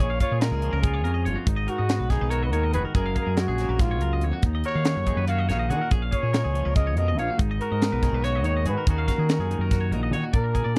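Dry, close 1970s-style studio sound frames this intricate, wistful math rock and midwest emo excerpt in 7/8 at 284 BPM in Eb minor, where a breathy, dark trumpet with slapback echo sings the melody over a twangy, bright, compressed electric guitar accompaniment, while a second clean guitar shimmers through arpeggios with lush chorus, an overdriven, growling fingered bass sits up front, and a crisp fusion drum kit with a high-tuned snare and tight kick enters at 0.2 seconds, as the chords move from Bbm7 through Abm9 and Gbmaj9 to Ebm9.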